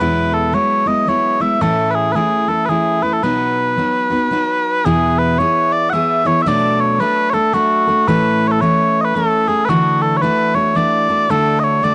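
A dry, gritty recording with a touch of light reverb frames this bright, lively Celtic folk piece, cut from a longer tune. It moves at 112 BPM in a swung 3/4, with the eighth notes lilting. Mellow small bagpipes carry the melody up front throughout, their sweet, continuous solo tone shaded with vibrato as they range between F#4 and F#5. Beneath them, a fingerpicked steel-string acoustic guitar, also up front, gives a full-bodied jumbo accompaniment reaching from E2 to A4. The harmony opens in B mixolydian, moving through Eadd9, A and B, then shifts to E mixolydian at 4.9 s for a second phrase built on E, Bm7, A and Dadd9 before settling on D.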